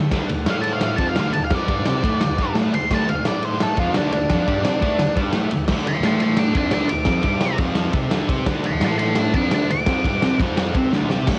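Garage rock at a driving 172 BPM in D mixolydian, this raw, rowdy cut from a longer piece pairs an up-front, double-tracked thick fuzz guitar riff and a saturated, gritty garage drum kit (punchy kick, crash, ride and snare, cassette-tape grit) with a dark octave-fuzz lead guitar soloing from 0.5 seconds, while a very quiet, buzzy vintage combo organ holds sustained chords with light vibrato and slips in short fills, all in a lightly reverberant home cassette recording that ends on a drum fill at 10.9 seconds.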